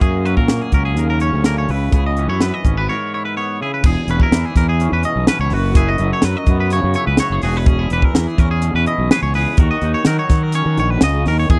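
A dry, close 1970s-style studio sound frames this wistful, playful math rock and midwest emo excerpt at 125 BPM in E lydian, where a bright, picked twangy electric guitar with subtle chorus plays accompaniment and a second compressed, fingered twangy guitar spins high arpeggios, both riding over a growly, up-front fuzz bass and a crisp, airy fusion drum kit with a high-tuned snare and punchy kick, pausing for a break at 2.9 seconds before the chords shift from F#add9 and C#m7 to E6, F#7sus4 and D#m7.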